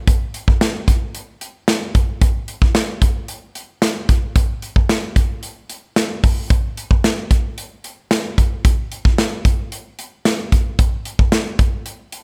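This short pop passage opens with a modern studio drum kit entering at 0.1 seconds and carrying the whole piece alone until it ends at 12.2 seconds. At 112 BPM in a straight 4/4, the kit sets a romantic, uplifting mood using hi-hat, kick drum, snare drum and tambourine. The acoustic kit sits up front in a studio room, with a punchy kick and a medium-tuned snare giving it a clear, grounded character. Light reverb adds a touch of space around the drums. Cut from a longer piece, this single section feels like a rhythmic bed waiting for the rest of the song to arrive.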